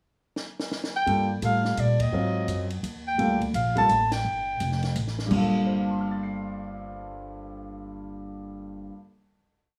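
Jazz in small-group swing and bop style, cool and moody in G minor at a brisk 170 BPM in a swung 3/4, where a compact cocktail drum kit with dark cymbals and a high-tuned snare opens with a fill at 0.4 seconds before a breathy, close-miked clarinet with vibrato and scooped notes states a motif-based melody in plate reverb over walking pizzicato upright bass and syncopated drop2 comping from an up-front grand piano, with band accents at 1.9 and 4.1 seconds before the piece settles on a final chord from 5.3 seconds.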